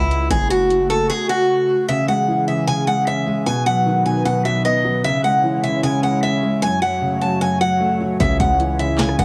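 A home-recorded cassette sound with light reverb frames this melancholic, brooding half-time trap cut in C# minor at 152 BPM, where a bright, boxy picked steel-string acoustic guitar carries the melody up front with audible finger squeak over an airy, breathy, chorused pad in the background, while a saturated, aggressive distorted 808-style bass and a booming analog drum machine with deep kick, crisp snare, handclaps and metallic hats fall away after the opening second and return at 8.2 s, and a dark, mellow grand piano with audible action noise enters at 1.9 s.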